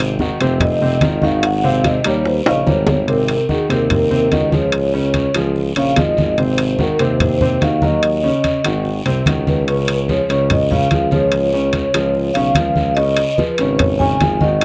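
Lively and sophisticated, this Afro-Cuban jazz passage, cut from a longer piece, moves at 146 BPM in a straight 4/4, with chords centred on Ab and Db harmonies such as Ab9, Dbadd9 and Ebm7. A vibraphone played with soft mallets carries the melody from 0.6 seconds, its mellow, metallic tone ringing with a medium motor vibrato and sounding close and full. Beneath it, a woody upright piano with long sustain supplies polished accompaniment, while a clear tuba anchors the bass with vibrato, a punchy attack and a smooth top. The percussion bed combines ringing metal-shell timbales, bright, compressed and saturated low-tuned congas played with soft hands, very quiet round bongos heard at the start and again from 13.0 seconds, and a raspy guiro set back in a large room. A drum fill at 2.5 seconds closes the opening vibraphone solo, and the dry, close studio sound recalls 1970s recordings.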